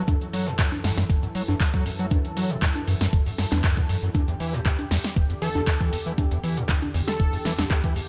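A squelchy, saturated acid bass riff and a detuned sawtooth pad open this driving, hypnotic acid house cut, the pad's soft-attack chords shimmering with chorus and a moving notch while both parts pump against the sidechain. The bass is gritty and resonant, a square-wave line with a fast, decaying attack, a filter sweep, ensemble chorus and digital delay. Up front, a thumpy, tape-tinged electronic kick anchors the straight groove, joined by an analog drum machine with a punchy snare, metallic hats, handclaps and congas. Far beneath sit a very quiet, cloth-damped acoustic kit with a rolled-off top and a grainy egg shaker, both in the background. The harmony moves from F#m7 to Em7 at 4.1 s, and at 5.4 s a catchy, mellow unison lead enters on a sustained A4, its detuned sawtooth layered with sine and noise and trailed by tape echo. A small room ambience surrounds the whole excerpt.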